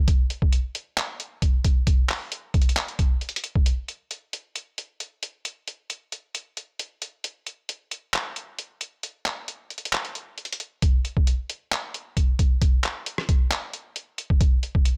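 A half-time hip hop groove at 134 BPM in 4/4 carries this melancholic, menacing fragment, where a lo-fi sampler-style drum kit of kick drum, rim click, hi-hat and handclaps, compressed, pitched down and muffled with a thumpy kick and a tape-warm tone, sits up front from 0.1 seconds over a faint digital ambience, changing sections at 3.7 and 10.8 seconds.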